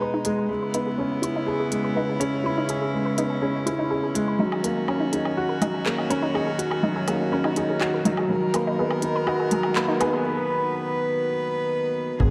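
A dark upright piano leads this melancholic, moving piano-and-strings electronica piece, playing a mellow, woody riff up front with audible action noise, a slightly detuned character and tape echo. Beneath it, a string quartet holds soft, sul tasto chords, one player per line, while an analog pluck ripples arpeggios in the background, colored by chorus, sidechain pumping, tape echo and a filter sweep across the build-up. An organic electronic drum kit of handclaps, crisp hi-hats and woodblock keeps a straight 4/4 pulse until 10.1 seconds, after which a break strips the texture back. The harmony moves through C#m7, D#m7 and Bmaj7. At 12.2 seconds, a deep, rumbling detuned saw bass with sidechain pumping and a soft electronic kick arrive just as the clip is cut from the longer piece, all set in a lush hall reverb with a dark production.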